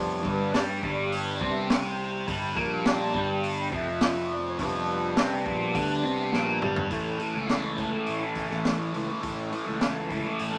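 Trippy and hazy, this psychedelic rock excerpt sets a reedy, breathing hand-pumped harmonium carrying a solo of sustained chords through 6.9 seconds against a bright, double-tracked fuzz guitar riff tinted by phaser, a round overdriven electric bass, and a gritty breakbeat drum kit with a punchy kick and high-tuned snare that enters at 0.2 seconds and plays a fill from 6.3 seconds just before the harmony moves from G to A, inside a moderate studio reverb.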